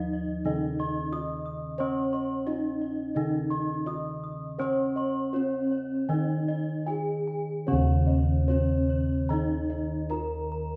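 The recording sits in a reverberant church or concert hall whose 1.4-second decay lets every bronze stroke bloom and hang in the air. This is a short, ceremonial and serene extract of Javanese gamelan in slendro tuning centered on Eb, moving at a straight 74 to 90 BPM in four. The melody comes from a bronze metallophone struck with padded disc mallets, its mellow, soft tone shimmering from paired tuning. Beneath it, a second metallophone played with a horn mallet carries the accompaniment in a close, dry and full sound. High above, a bright metallophone arpeggio shimmers alongside airy arpeggios on bossed gongs. Low bossed gongs anchor the bass with a round, beating resonance, and the ensemble shifts into a new section at 7.7 seconds before the clip ends at 10.8 seconds.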